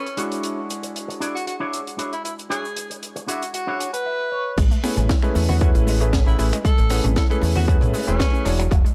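Nu-disco at 116 BPM in A major, this feel-good, groovy cut from a longer piece moves on a straight 4/4 pulse with a dry, gritty sound. A distant, roomy tenor saxophone carries the melody with light vibrato and tape echo, over a vintage electric grand piano whose clangy low end and long sustain pump against the sidechain. A bright, twangy electric guitar with an envelope filter and lush chorus plays a riff until 4.6 seconds, capped by a clean guitar fill just before, while a tight funk kit with a high-tuned snare, finger snaps, hi-hat, shaker and crash keeps time throughout. At the drop at 4.6 seconds, as the harmony moves from E13 to Amaj9, a punchy, overdriven electronic kick lands up front alongside a dark, round fingered bass with an envelope filter. In the background, a detuned, wave-folded unison pluck spins arpeggios through sidechain pumping and tape echo, while very quiet, ringing cabasa, congas and bongos add hard-handed color.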